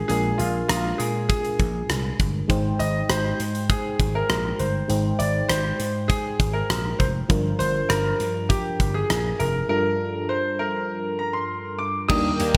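A clear, smooth concert grand piano carries the melody up front through analog chorus and digital delay, over a warbling FM electric piano with tremolo and, from 0.1 seconds, a growly, punchy slap bass and a big rock drum kit whose gated reverb lends the kick, hi-hat, rim click and crash a bright punch. This moody, nostalgic 1980s-style pop cut moves at 100 BPM in a straight 4/4 through Bb7, Abmaj7 and Gm7 chords, with a moderate plate reverb and bright digital production. At 12.1 seconds a shimmering, detuned pulse-width pad and a clean, direct-recorded electric guitar riff with lush chorus enter in the background before the excerpt is cut off.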